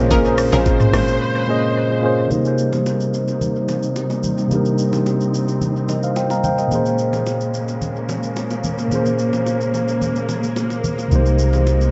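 Amapiano with a deep, late-night mood, this short excerpt rests on a mellow, up-front tine electric piano carrying dub echo and a lush, distant string section with vibrato, both softened by a low-pass filter as the harmony moves between Bbm7 and Cm7. A tight, percussive log drum bass with a fast attack and decaying tone anchors the opening drop before falling away at 1.2 seconds into a brief break, while a very quiet, bright sawtooth chord stab with chorus flickers in the first moment. A smooth electronic drum kit with a knocking kick, metallic hats, rim click, shaker and toms runs throughout with dub echo trails, alongside congas and bongos played with hard hands in the background of a live room. From 2.3 seconds a long filter sweep carries the second section. At 11.1 seconds a deep, punchy sine sub bass arrives up front with a pitch-drop attack, and the whole mix stays dark, echo-heavy and lightly reverberant.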